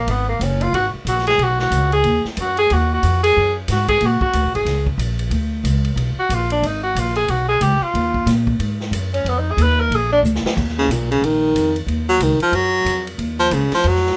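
A clear tenor saxophone with soft-attacked, scooped notes and vibrato opens this moody, cool small-group swing and bop excerpt in Eb minor at 183 BPM, soloing over woody, thumpy gut-string pizzicato upright bass and a drum kit with ride, hi-hat, crash, a medium-tuned snare and a punchy kick, until a drum fill at 10.2 seconds hands off to a bright, forceful baritone saxophone solo from 10.8 seconds with light vibrato and scooped notes, all set in light reverb.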